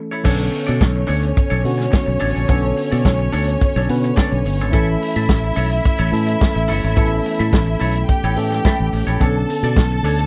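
Glamorous and danceable, this short disco excerpt moves at 107 BPM in a straight 4/4, set in B minor and tuned slightly below standard pitch. A dry, mid-forward soul drum kit with a tight kick, medium-tuned snare, hi-hat and dark crash cymbals sits up front, joined almost at once by a round, punchy fingered electric bass that is equally prominent. A worn tine electric piano, slightly out of tune and heard through its built-in speakers, carries the accompaniment alongside a clean, picked, compressed semi-hollow guitar with a warbly pitch drift, mixed lower. Above them a smooth, even studio string section adds a second line with rich ensemble vibrato. The harmony shifts from Bm9 to A at 4.7 seconds and returns to Bm9 at 9.2 seconds, all in a close, nearly reverb-free sound.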